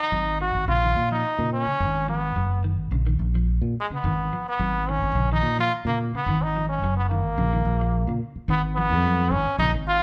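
A straight 4/4 afrobeat groove, intense and hypnotic, is anchored by a round, punchy fingered electric bass up front, while a muted trombone takes the nasal, brilliant solo melody with vibrato and scooped notes, and a dark, clean electric guitar picks arpeggios in the background through spring reverb, all captured as a band playing live in a moderately reverberant stone room in this short cut from a longer piece that shifts to a new section on a G#m7 chord at 8.5 seconds.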